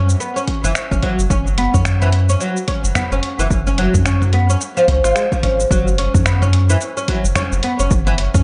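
Earthy and warm, this short swung organic downtempo cut from a longer piece is led by a bright, woody oud playing up-front arpeggios colored by vintage 12-bit sampler grit and tape echo, over a round, dark analog bass with tube saturation and sidechain pumping. A gritty, compressed sampler-style soul kit of finger snaps, hi-hat, shaker and toms sits low in the mix, and a punchy, overdriven electronic kick joins at 0.5 s. Spring reverb and digital ambience give an echo-heavy, softened sound, and the harmony moves to a new section at 5.7 s.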